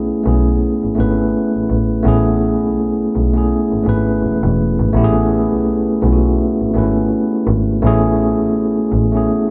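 Bathed in a wet plate reverb, this dreamy, smooth and soulful neo-soul R&B fragment from a longer piece rests on an Amaj9 chord, with a mellow, clean tine electric piano heard through its built-in speakers and a bowed double bass, focused and rich with vibrato, joining at 0.3 seconds, both sitting up front in a lightly swung 4/4 for about 9.5 seconds.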